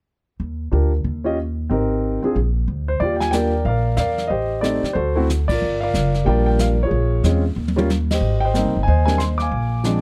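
A woody, pizzicato upright bass opens this sophisticated swinging jazz piano trio fragment at 0.4 seconds, joined almost at once by an intimate, up-front grand piano carrying the melody with long sustain and audible action noise, in Eb major at 184 BPM. Brushed drums arrive at 3.0 seconds with an airy, polished small-room sound and a boomy kick, adding a short fill at 7.6 seconds between two band accents. The dark, dry production keeps the harmony moving through rich seventh and ninth chords.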